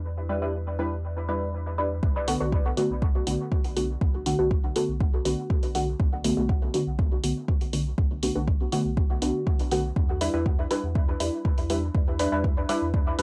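Hypnotic and meditative, this dub techno excerpt at 121 BPM in B minor opens on a smooth, dark sine sub bass and muted, detuned sawtooth chord stabs dressed in chorus, phaser, cassette tape and dub echo, both pumping against the sidechain, before an up-front, overdriven electronic kick enters at 2.0 s with an overdriven hi-hat just after, all set in a small booth ambience as the chords move from Em7 to Bm7 and back to Em7 at 10.0 s.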